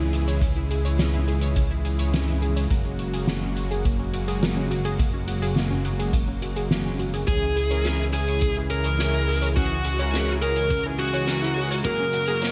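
A straight 4/4 pulse at 105 BPM drives this nostalgic, nocturnal synthwave piece in C# dorian, where a boomy kick and a soft-mallet kit's fat snare and hi-hat sit under a glossy, up-front chorused synth bass and a detuned soft supersaw, both pumping with sidechain, while a round analog pluck plays arpeggios through chorus and tape echo over C#m and F#add9 chords, until at 7.3 seconds a filter sweep marks the second section as a dark, distorted high-gain lead guitar takes the melody with tape echo, shadowed by a very quiet, airy dreamy lead and bold analog synth brass stabs in the background, within light reverb and studio ambience.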